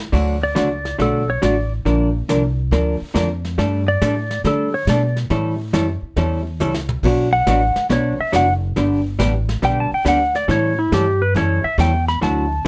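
Playful and swinging, this short western swing cut in D major moves at 139 BPM, with a twangy, up-front lap steel carrying the slide melody over dark, picked hollow-body jazz guitar chords, woody pizzicato upright bass and a softly brushed small-room drum kit whose brief fill at 6.6 seconds marks the midpoint, all set in light reverb.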